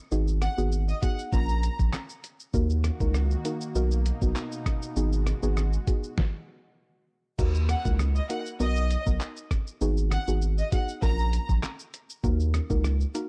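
Dancehall with a sultry, tough mood, this short section of a longer piece rides a straight four-beat groove and carries a dark, warm production in a digital ambience. A saturated sine sub bass sits deep and thick up front, while a muffled, pitched-down sampler-style drum kit brings a thumpy kick, medium-tuned snare, rim clicks, handclaps, hi-hat, shaker and crash with a compressed, tape-warm character. A soft, round pluck with a detuned, wave-folded edge plays the accompaniment, its chorus and sidechain pumping giving it a breathing motion. A studio violin section adds smooth phrases with vibrato and tape echo near the start and again from 7.7 to 11.5 seconds, while a lush unison pad, nasal and bright with chorus, holds sustained chords between 2.8 and 6.2 seconds. The arrangement halts for a stop from 6.2 to 7.4 seconds before the second section picks up over an Eb minor chord cycle.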